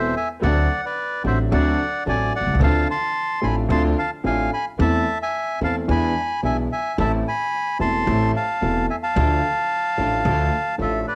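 A reedy, bright bandoneon sings the melody up front in this passionate, tense tango fragment at 110 BPM in 4/4, its rubato phrasing carried over a D7, Dm7, Am/E, E7, Am, Dm progression. A concert grand piano with audible action noise and deep bass accompanies, while a pizzicato upright bass adds a woody, growly low end. In the background, a dark bowed chamber string section places soft-attack stabs through plate reverb, and the bandoneon, piano and strings all carry the colour of a home cassette recording.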